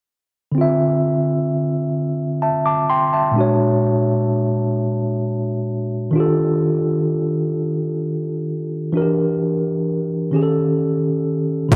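A light reverb gives this short cut from a longer piece a late-night feel, with a clean, warm tine electric piano sitting in the background as if heard through its own built-in speakers. It is a slow, sultry R&B piece in 6/8 at 43 BPM counted in dotted quarters, with a straight feel. The electric piano carries the accompaniment from 0.5 s, spanning Bb2 to D6 through rich, jazzy harmony: Dm9, Bb7alt, Ebmaj9#11, Em7b5 and Eb7#11. An electronic, produced drum kit arrives only at 11.7 s, placed up front, where a knocking kick and metallic hi-hats mark the moment. The electric piano and drums both stop at 11.8 s.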